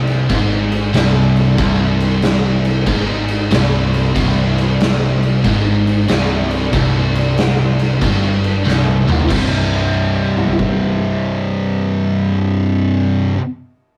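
A rough rehearsal-room sound with a warm saturation and a moderate reverb frames this short, hypnotic stoner and doom metal passage, cut from a longer piece. At 93 BPM in 4/4 with a swung eighth-note feel, it sits heavily on a C5 chord, tuned slightly below standard pitch. A biting, double-tracked overdriven guitar carries the riff in a bright tone, while two thick fuzz guitars play the same riff low in the background, distorted and warm. A hollow-body short-scale bass, picked and amped with overdrive, adds a dark, round bottom beneath them. The oversized, low-tuned drum kit sits forward in a stone-room ambience, with a punchy kick, medium-tuned snare, toms and crash, and a gritty edge; it plays a fill from 8.7 to 9.3 seconds, moves into a new section, and stops at 10.8 seconds while the guitars and bass ring on, brooding, until the close.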